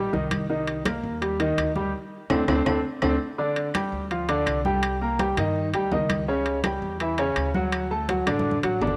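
A clear grand piano, up front with a cassette-tape tint, opens this passionate, danceable salsa excerpt in G minor at 166 BPM, alongside a woody pizzicato upright bass with steel strings. Soft-handed, thick-skinned congas in the background, ringing metal-shell timbales heard close and dry, and vintage, band-limited claves join almost at once, and a drum fill with a band accent from 1.9 to 3.4 seconds punctuates the groove before another fill arrives at 8.3 seconds. The home cassette recording sits in a lush hall reverb as the chords move through Cm7, D5 and G5, back to Cm7, then Em13 and D.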